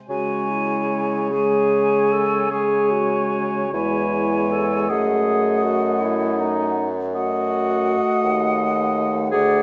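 Solemn and yearning, this slow romantic movement for wind quintet drifts in a rubato 12/8 at roughly 48-56 BPM, cut from a longer piece and resting on C#m before shifting to D#dim/F# at 4.9 seconds. A mellow, hollow silver flute with airy vibrato carries the melody above a distant, roomy oboe on the second line, while a present clarinet and a close-miked French horn with light vibrato fill in the accompaniment and an up-front bassoon anchors the bass. All five play together from 0.1 to 9.6 seconds in a wet recital hall reverb.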